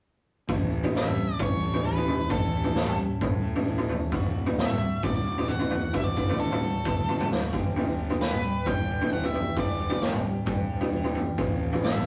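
A raw garage drum kit sits up front with a boomy kick, medium-tuned snare and toms, gritty and saturated, driving this restless, anthemic quiet-loud alternative rock excerpt at 132 BPM in 4/4, as a bright, twangy electric guitar through a small old amp picks arpeggios in the background over a dark, round fuzz bass, a dark octave-fuzz lead guitar carries the melody from 1.0 seconds, and the chords move from A to D, G and F/A in a rough rehearsal-room recording with small room ambience and little reverb.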